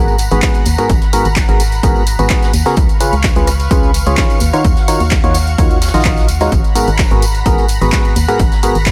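A nasal, hollow organ stab sits up front in this soulful, bittersweet piano house piece at 128 BPM in 4/4, playing a mellow riff treated with chorus, delay and sidechain pumping across a G#m9, C#7, D#m9 and back to G#m9 progression in G# dorian. Beneath it, a dark, percussive FM bass with an organ-like tone carries the low end, pumping with the sidechain, while a silky, bright analog string pad holds sustained chords through an ensemble chorus. An overdriven electronic kick drum with a punchy analog character enters at 0.4 s. Around it, an overdriven analog drum machine adds handclaps, hi-hat and rim clicks from 0.2 s. A very quiet brushed jazz kit with a high-tuned snare and hi-hat, plus a tambourine in the background, add acoustic texture from 0.1 s, all set in a small room ambience in this short cut from a longer track.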